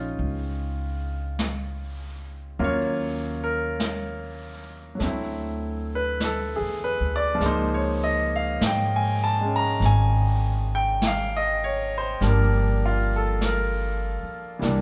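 A moderate, large studio reverb surrounds this trio, recorded playing live in one room. The result is a romantic, tender jazz ballad taken from a longer piece, swinging slowly at 50 BPM in 4/4. A clear, up-front grand piano voices the chords, opening on a rootless Bbm11 and moving through Ebm7, D9 and Db69 to Gm7. Beneath it, a woody, thumpy pizzicato upright bass sits close, and from 0.2 seconds a natural-sounding brush kit adds brushed snare and hi-hat.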